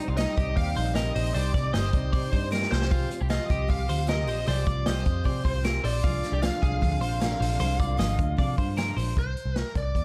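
Wistful and restless, this jangly indie pop excerpt in C minor moves at 154 BPM, with a punchy, foam-muted vintage bass and a vintage drum kit with a rolled-off top (fill at 2.5 seconds) driving bright, compressed twelve-string electric arpeggios, a full-bodied picked dreadnought acoustic, a distorted bluesy lead guitar melody, a veiled con sordino string section, and a very quiet, jingly tambourine through chords from Cmadd9 to Fmadd9 and Ddim in a dark, dry production.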